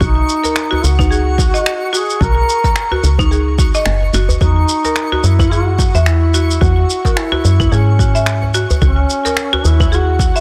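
Organic downtempo at 109 BPM with a swung sixteenth feel, earthy and warm, cut from a longer piece: a mellow, distant duduk carries the melody with vibrato, while a buzzing, hard-mallet marimba plays dry arpeggios, both trailing delay and shimmer reverb. A round, dark FM bass sits up front under an overdriven deep electronic kick, layered electronic shakers and finger snaps, and a tight, cracking djembe that joins at 0.4 seconds, while a faint twinkling granular texture sparkles in the background. The chords move from a rootless Bmaj7sus2 to E at 4.4 seconds before dropping out, all in a dense, heavily limited modern master with light digital ambience.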